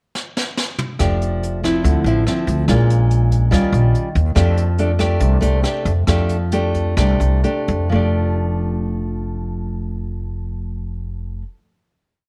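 Sophisticated and romantic, this short, complete bossa nova piece in F major moves in a straight 4/4 at 122-143 BPM. A jazz brush drum kit opens with a fill during the pickup bar, its high-tuned snare, rim clicks, hi-hat, toms and boomy kick carrying a soft bossa groove until 7.8 seconds. At 1.0 seconds the nylon-string guitar and upright bass enter together, the guitar dark and fingerpicked in a classical manner, with thumb bass under syncopated plucked chords and an audible finger squeak. The pizzicato upright bass sits up front with a woody, growly tone on steel strings, playing a dotted root-and-fifth line. The harmony passes through F69, Dm9, Bbm7 and Eb9 before returning to F69, and the tempo slows from 4.4 seconds into a held final chord that rings to the close in a light reverb and studio ambience.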